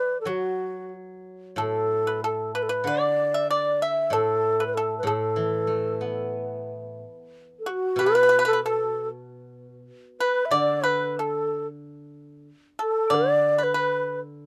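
Chinese traditional music for a small chamber ensemble, this brief pastoral, graceful passage in an A zhi mode moves at around 94 BPM in 2/4, though the phrasing flows with a rubato ease. A bamboo xiao carries the melody up front, its end-blown tone breathy and mellow with vibrato, tongued notes and rolled-off highs. A pipa plays a second line in the same register, bright, dry and percussive under fingerpicks, also sitting close to the listener. Lower down, a steel-string zither enters at 0.3 seconds with a softer accompaniment, its fingerpicked notes ringing with a silvery shimmer. Light reverb gives the trio a gentle sense of space, and the cut from a longer piece shifts into a new section at 6.7 seconds before the zither's last notes end at 14.5 seconds.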